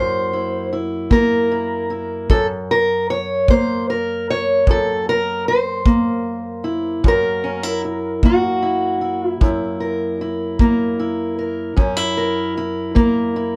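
Acoustic country blues in F# mixolydian at 51 BPM in 12/8, this swaggering, gritty excerpt sets a dark, boxy fingerpicked parlour steel-string guitar up front on the melody over an F#7 chord, with a punchy, natural kick drum joining at 1.1 seconds, all captured dry through close, detailed microphones.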